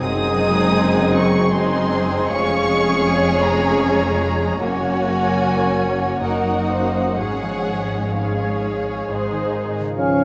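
A rich, vibrato-laden violin section carries the melody high above the orchestra, its focused tone sounding a touch distant, while a second violin line sits up front with soft attacks and expressive phrasing. This is a solemn, elegiac slow romantic movement in 3/4, taken with a flexible rubato feel and cut from a longer piece. Beneath the violins, a lush viola section supplies smooth, even accompaniment until 9.8 seconds, and a bright, ringing harp plucked with the thumb spills arpeggios in the background. The low end rests on a warm cello section in the background and a bowed double bass section with a smooth top. At 10.0 seconds, while the harmony rests on Ab, the winds and brass enter briefly: a mellow clarinet and hollow flute, a roomy oboe, a close-miked bassoon, and a dark, distant French horn section holding chords. A wet concert hall reverb envelops the whole orchestra.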